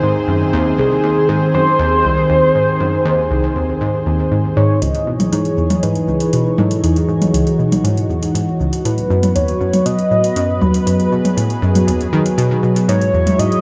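A bright, round analog pluck drives this mysterious, cosmic stretch of sequencer-driven space music, its wave-folded riff in the low register sitting up front with a fast attack, decaying notes, chorus and delay. Beside it, a lush unison pad holds thick, warbling chords from the start, its slow attack and long release giving the harmony a full-bodied vintage depth. A shimmering, retro pulse-width lead carries the melody in the middle register, darker in tone, with vibrato, chorus and delay. At 4.8 s the music shifts into a new section and a soft vintage rhythm box enters with metallic hi-hats and toms, overdriven and echoing as if re-recorded in a large room. A moderate plate reverb surrounds the mix, and the passage is cut from a longer piece.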